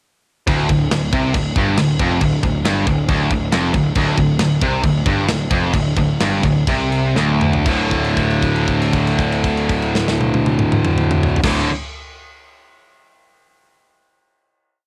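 A bright, tightly distorted guitar sits up front, hammering out a single-note heavy metal riff while a second, sludgier overdriven guitar plays its own single-note riff from the background, both carrying a cassette-tape grit. Underneath, a growly fuzz bass drives eighth notes in unison with the riff, and a tight acoustic metal kit with a tight kick and medium-tuned snare pushes a dark, aggressive groove. The riff slows from 4.0 seconds, a drum fill leads into a held final chord at 7.7 seconds, and the whole short piece has the dry, close feel of a home cassette recording.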